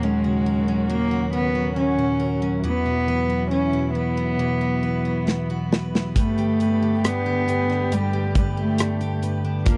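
A bowed solo cello with a soft, floating sul tasto tone and tape echo carries the melody up front in this hopeful, emotional pop ballad at 69 BPM, over a mellow, clean tine electric piano, an intimate bowed string section holding sustained chords with vibrato, and warm picked steel-string acoustic guitar arpeggios, while a punchy, rolled-off modern studio drum kit with hi-hat, kick, rim click and snare enters with a fill at 5.3 seconds, all in a dry, close 1970s-style small room as the chords move from D#m7 through Esus2 to Gadd9.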